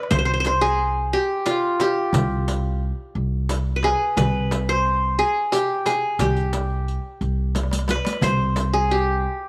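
Hypnotic and longing, this short Arabic maqam ensemble passage moves at 89 BPM in a straight 3/4. The bright-edged qanun, played with fingerpicks on its triple strings, carries the melody up front between F4 and C5, while a woody, thumpy pizzicato upright bass anchors a low C2 beneath it. A clay-shelled darbuka played with soft hands and a small, bright frame drum sit in the background alongside a close riq with dark jingles, all under light reverb, with a drum fill from 7.5 to 8.2 seconds.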